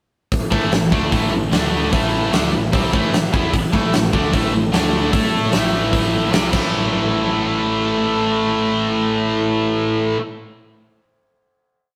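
A rough rehearsal-room recording with a moderate stone room reverb frames this energetic, anthemic hard rock piece, built on a bright, double-tracked power-chord riff from a tight distorted guitar up front. A huge arena drum kit drives a big rock groove with a fat snare, punchy kick and bright cymbals from 0.3 s until 6.6 s, while a round, overdriven electric bass sits in the background playing driving eighth notes that double the guitar riff. At 6.7 s guitar and bass land on a final hit, ringing out until 10.2 s.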